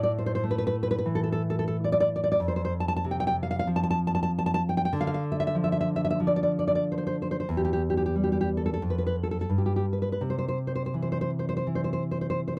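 A woody, thumb-plucked nylon-string guitar with the warm tone of old strings sits up front in this intimate, melancholic romantic solo in C major, moving with rubato between 80 and 98 BPM in 4/4 across a range from E2 to A5, passing through A5, F5, Dm and Emadd11 chords before a chordless stretch at 8.8 seconds and an arrival on C at 10.2 seconds, all captured as a dry, close 1970s-style studio recording with light reverb in this 12.6-second excerpt from a longer piece.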